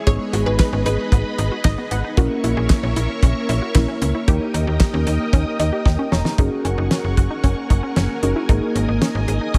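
A damped 70s drum kit drives this cool synth-pop excerpt at 114 BPM in a straight 4/4, its fat snare, tight kick, hi-hat and handclaps sitting dry and up front, with a drum fill at 5.9 seconds. Beneath it, a slap-like FM bass adds a snappy, metallic attack and digital bite, also placed forward in the mix. Muted, felt-like synth keys supply soft, dark, intimate accompaniment with chorus and shimmer reverb, and they play a fill starting at 5.3 seconds. A vintage string machine with cellos holds full-bodied, mellow sustained chords under ensemble chorus, while a lush, detuned unison pluck spins background arpeggios through delay. A second punchy pluck line, coloured by a moving notch, appears only briefly near the start, and the harmony moves from G#m through A#dim and D# before opening onto F#add9 at 6.4 seconds in a small, lightly reverberant room.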